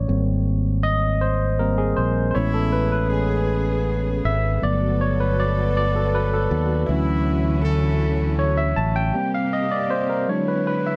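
Tender and sensual, this is a slow R&B passage in 6/8 at 53 BPM, cut from a longer piece and lasting about 11 seconds. A bright, barky tine electric piano carries the solo throughout, its clean, up-front tone lightly touched with subtle chorus. A round, direct fingered electric bass sits beneath it from the start, dropping out at 9.1 seconds. At 2.3 seconds a lush, woody string section enters with bowed, vibrato-rich sustained chords, joined by a clear jazz-style horn section playing stabs until 8.7 seconds. The harmony drifts through rich major-ninth chords before turning to a minor eleventh and an E7, all set in a light reverb.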